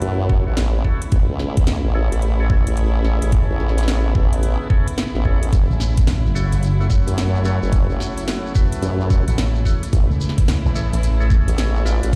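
This gritty, playful glitch hop excerpt opens with a chorused, tube-saturated formant-sweep wobble bass up front, soft sul tasto chamber strings pumping against the sidechain, percussive tonewheel organ stabs with key click, slow rotary speaker, 12-bit sampler grit, low-pass filter and dub echo, and a tape-warm drum kit of cracking snare and metallic hats, joined at 0.3 seconds by a knocking electronic kick, then a grainy shekere at 5.5 seconds and a bright, punchy envelope-filtered slap bass at 5.7 seconds, all riding a swung sixteenth feel as the chords move between F#m7 and Amaj7.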